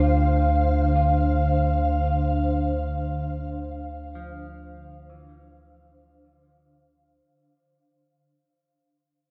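Bathed in a vast, echoing cathedral reverb with a dulled top end, this melancholic, spacious ambient fragment in free time and D minor rests on a single Dm9 chord: an ethereal, detuned pad sits up front holding sustained chords from D3 to F5 over a deep, round sine sub bass on D2, while a clean, hollow-body electric guitar plays fingered arpeggios with subtle chorus and delay in the background, fading out across the first 7.3 seconds and lingering until it stops at 8.2 seconds.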